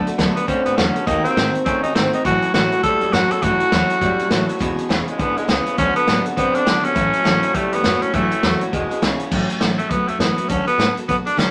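Opening on picked, full-bodied steel-string acoustic guitar and a twangy, slightly broken-up electric guitar riff with warbly pitch drift, this rowdy, retro rockabilly excerpt swings at 204 BPM as a vintage drum kit with a punchy kick and dark cymbals, a woody, thumpy upright bass in the background and an up-front, raspy, forceful tenor saxophone melody join over D6, A6 and E6 chords in a studio reverb, with the electric guitar dropping out at 9.3 seconds.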